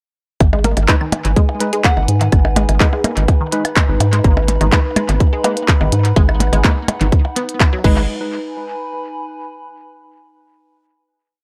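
A quirky, clinical minimal techno piece built on an up-front, tight four-on-the-floor electronic kick and a rubbery, hollow square bass riff pumping under sidechain, with clicky hats, handclaps and crash plus tape-echoed blips, claves, bongo and woodblock in cross rhythm, while a squelchy, juicy resonant pluck loops a 10-step sequence that drifts against the bar, sparse echoing organ stabs sit in the background, a soft FM bell makes a brief appearance at 1.8 seconds, and a warbly, nostalgic tape-like pad carries on alone after 8.1 seconds to hold a final chord until 10.0 seconds in an echo-heavy, dry mix.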